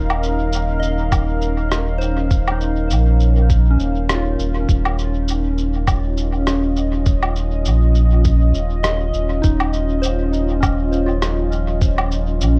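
A dark, moody pad of detuned sawtooth voices with a sub octave opens this meditative ambient dub excerpt, its slow-attack chords bathed in chorus and reverb beside a round sine sub bass sitting up front with tube saturation, while a soft FM bell plays gentle arpeggios in the background through chorus, phaser and dub echo. A muffled, tape-toned woodblock, shaker and rim click arrive at 0.1 seconds with their own dub echo, and a thumpy, compressed kick joins at 1.1 seconds, all riding a lightly swung sixteenth-note feel. The whole has a spacious, dusky production with the percussion sounding as though re-recorded in a small room.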